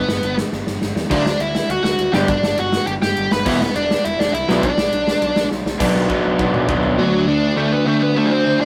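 A straight, driving 4/4 at 204 BPM powers this aggressive, angry punk rock cut, taken from a longer piece. A big acoustic rock kit sits up front with a punchy kick, medium-tuned snare, bright cymbals, toms and the ambience of a big room, rolling through drum fills before two riff guitars crash in at 1.1 seconds and again in a longer fill from 5.8 seconds. Those riff guitars split the character: one is crunchy and bright, the other dark, lo-fi and garage-raw, both picked and overdriven. Underneath, a fuzzed, growly picked bass digs into the low end, while a bluesy lead guitar with distortion and tape echo carries the melody from the first moment to the last. The bass and garage guitar drop away at 7.0 seconds, and the harmony moves through G, D, E5 and Bm before settling on D. Light reverb and saturation give the whole thing the rough feel of a rehearsal room.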